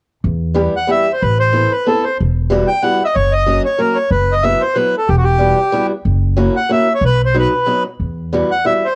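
Musette waltz in E harmonic minor, whirling and nostalgic, moving at 186 BPM in 3/4 with a light swing on the eighths in this brief fragment cut from a longer piece. A pizzicato upright bass with a thumpy, woody tone and tube saturation enters at 0.2 seconds, joined by a picked old ladder-braced acoustic guitar whose boxy, dark sound with old strings carries the accompaniment from 0.5 seconds. A reedy, smooth accordion, colored by cassette tape, takes the melody up front from 0.8 seconds over chords such as Amadd9, F#7 and B, all in a light reverb with the intimate feel of a home recording on cassette.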